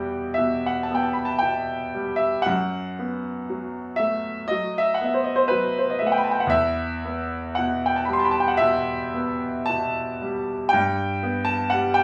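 A clear concert grand piano, up front with a deep bass and an open sound, plays alone throughout this melancholic, wistful romantic nocturne in E minor, moving at a rubato 59 BPM in 4/4. Ranging from E2 to C6, it turns from E minor to B over F sharp and back, settling on E minor over G near 10.7 seconds. Light small-room reverb surrounds the piano in this short cut from a longer piece.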